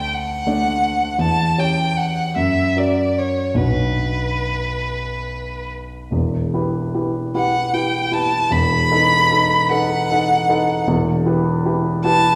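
A focused, clear violin carries a melancholic, yearning melody with vibrato, bowed by one player and placed up front over a grand piano with a warm tone that supplies the accompaniment throughout. This romantic classical duo moves in a slow, rubato 6/8 at 46-56 BPM in dotted quarters, starting in B minor and shifting to E minor at 6.1 s. A wet recital-hall reverb surrounds the pair, and the passage is cut from a longer piece.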